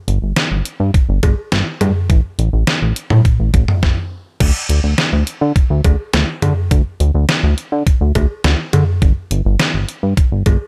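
Synth-pop at 104 BPM in a driving, melancholic mood, this short cut pairs a glossy, nasal chorused synth bass with pulse-width modulation and a filter pluck against a detuned 8-bit digital drum machine of thumpy kick, medium-tuned snare, hi-hat, toms, cowbell and crash, both up front with little reverb, breaking for a stop from 3.8 to 4.4 seconds before the figure returns.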